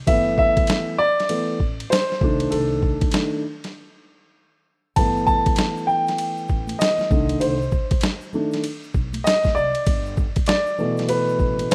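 Cool and relaxed, this jazz-hop excerpt from a longer hip hop piece moves at 98 BPM in 4/4 with a 16th-note swing, set in G major and tuned to A4 = 442 Hz. A dark, mellow baby grand piano sits up front with long sustain, taking a solo over chords that alternate between G69 and Cm6, with a brief break at 3.7 seconds. Beneath it, a woody pizzicato upright bass with gut strings adds a low, thumpy foundation. The boom bap sampler-style kit is compressed, pitched down and gritty, with a tape-warm character, a medium-tuned snare, hi-hat, ride cymbal and kick, all placed up front. Bright, close tube shaker and hard-handed congas enter very quietly at 5.0 seconds. Light reverb and small room ambience give the whole piece the loose feel of a rough home demo.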